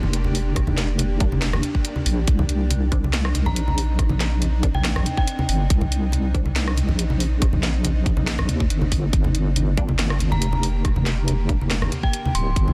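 Opening on a cloudy, blurred granular pad and a deep, wobbling square-and-sine bass up front, this brooding, cavernous deep dubstep excerpt in C minor at 140 BPM, half-time with a slight swing, moves from Gm to Cmadd9 and back as low-tuned congas, a garage kit with cracking snare and warm hats, and a tight electronic kick at 0.6 seconds gather beneath a very quiet, muted filtered dub chord stab with phaser and an eerie, inharmonic FM bell that warbles through chorus and dub echo at 3.5 and 10.3 seconds, all in a dense, heavily limited modern master.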